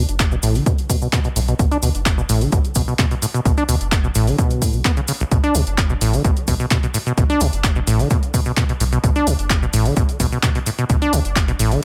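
A rubbery, resonant acid bass riff with saturation, tape echo and sidechain pumping drives this hypnotic, raw acid house excerpt in B minor at 129 BPM, set over a round sine sub bass that pumps with it, an overdriven, punchy electronic kick up front, dry analog drum-machine handclaps and hi-hat with overdrive, and a grainy cabasa in the background, all in a close room with little reverb.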